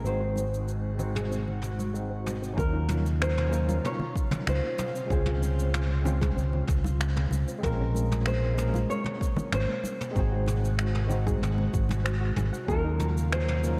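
A straight 4/4 groove at 95 BPM rides on distant, roomy brushes with finger snaps, shaker and toms, joined by very quiet, close and dry congas played with soft hands. This blissful, sunny sunset chillout cut opens with a filter sweep on a synth pad, and at 2.6 s a deep, overdriven electronic kick arrives to anchor the beat. Up front, a dark, round fingered electric bass carries the low end, while a worn, slightly out-of-tune tine electric piano with medium tremolo and tape echo lays down the chords through a combo amp. The melody comes from a thumb-plucked nylon-string guitar with fresh strings, its dark classical tone trailed by tape echo, over a breathy, detuned pad with chorus and phaser sitting in the background and a very quiet, nasal pluck spinning gentle arpeggios. The harmony moves through Ab7, Ebm9, Dbmaj7 and Bbm9, all set in a dreamy mix soaked in lush hall reverb, as part of a longer piece.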